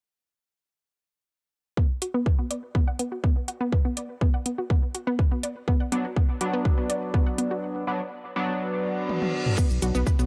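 Melancholic and driving, this short melodic techno excerpt in B minor moves at 123 BPM, as a lush, detuned unison pluck spins sidechain-pumped arpeggios through a filter sweep and tape echo over a punchy electronic kick and a house kit with metallic hats, shaker, toms and crash, joined at 5.9 seconds by edgy, nasal sync-sweep polysynth stabs with chorus and phaser, before a break brings a reverse cymbal and a drum fill that lead into a fat, detuned analog bass at 9.7 seconds, all in a dry, gritty hardware sound.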